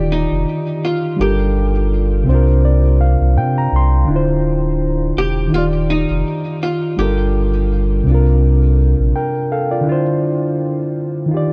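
A lightly swung 83 BPM groove in 4/4 sets this nostalgic, hazy lo-fi hip hop fragment in D phrygian, where a dark, hollow-body archtop guitar carries the melody through lush chorus, delay and a low-pass filter until 8.4 seconds, a reedy, up-front electric piano lays down filtered chords such as Ebmaj7, Gm9 and C9sus4, and a deep, sine-rounded sub bass with octave holds the low end until 9.1 seconds before the piano alone fills the break from 9.9 seconds, all wrapped in light digital reverb and cassette-tape grain.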